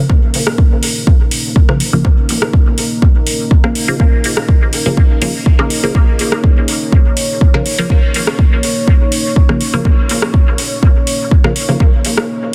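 A dense, heavily limited mix with little reverb carries this hypnotic, meditative dub techno excerpt, where an overdriven, up-front electronic kick and a deep house kit of metallic hi-hats and rim clicks drive alongside muted, resonant chord stabs soaked in phaser and dub echo and a moody, warbling pad with chorus and sidechain pumping, before a break at 12.3 seconds.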